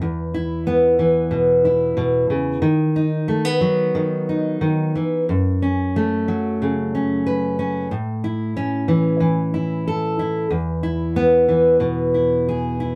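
Hopeful and gentle, this folk piece is a short section cut from a longer work, played by a solo fingerpicked steel-string acoustic guitar at 92 BPM in a straight 4/4. The dreadnought guitar carries the whole performance alone from 0.0 to 13.0 seconds, ranging from E2 up to B4. Its tone is dark, woody and full-bodied, played on old strings. The harmony moves from E5 through B/D#, F#m and A before settling back on E at 10.5 seconds. Close, detailed microphones place the guitar up front, with a light reverb adding a touch of space around it.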